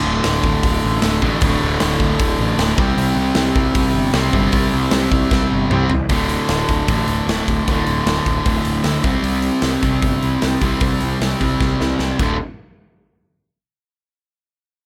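A dry sound with little reverb frames this upbeat, energetic punk rock clip, cut from a longer piece, driving along at 153 BPM in a straight 4/4. Two picked, overdriven electric guitars, one bright and up front and the other sludgy and warm, pound out a riff that alternates between D5 and C5 chords, over a growly, fuzz-drenched picked bass. An up-front acoustic rock kit, with a boomy kick, a medium-tuned snare, bright cymbals and toms, sounds out a big room and throws in fills at 5.3 and 11.6 seconds before the band cuts off at 12.4 seconds.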